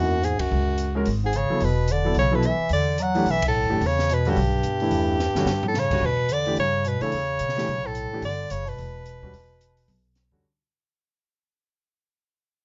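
An up-front soprano saxophone with light vibrato and a smooth top carries the melody in this spiritual, cool modal jazz excerpt with a swung feel. A clear bass clarinet joins it with a scooped second line over an intimate grand piano with audible action noise, a woody pizzicato upright bass and an open studio drum kit with a high-tuned snare and boomy kick. The band hits accents at 0.4 and 3.4 seconds before a drum fill at 5.2 seconds and a fade-out from 6.0 seconds.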